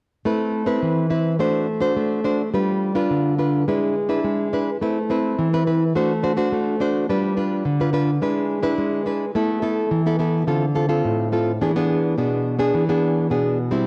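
A fingerpicked nylon-string guitar plays alone and up front from 0.3 s, its classical tone warm as it moves through a yearning, bittersweet samba progression from Amadd9 through D7/A, G7 and E7/G#. At 4.8 s a second section begins, repeating that turn before opening onto Asus2, Dm7 and E7, the guitar ranging from A2 up to C5. A moderate, lush hall reverb surrounds the playing, while the cassette home recording lends a softly worn, homespun quality to this fragment of a longer piece.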